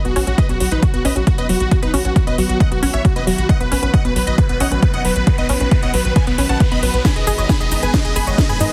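A punchy, overdriven electronic kick sits up front in this soaring, euphoric uplifting trance build-up at 135 BPM, where a huge, detuned supersaw melody rides over sidechain-pumped unison plucks, a bright plucky lead, a lush phased pad and a tight, nasal sequencer bass, while a house kit with a cracking snare and metallic hats drives a drum fill from 7.0 seconds as a background riser sounds throughout the heavily compressed, dry radio-style mix.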